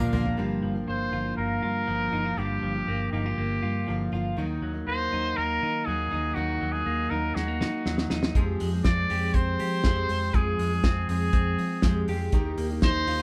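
Recorded live in one room with moderate studio ambience, this bright, breezy jangly indie pop excerpt at 120 BPM features a punchy vintage-toned trumpet with light vibrato carrying the melody from 0.9 s over twangy, compressed clean electric guitar arpeggios, a shimmering, octave-doubled fingerpicked twelve-string acoustic guitar in the background and a round, foam-muted fingered electric bass, while an up-front, cloth-damped thuddy drum kit with a fat snare and tight kick plays a brief opening fill, drops out, and returns with another fill at 7.4 s as the chords move from Gm7 through Ebm and Fmadd9 to Eb.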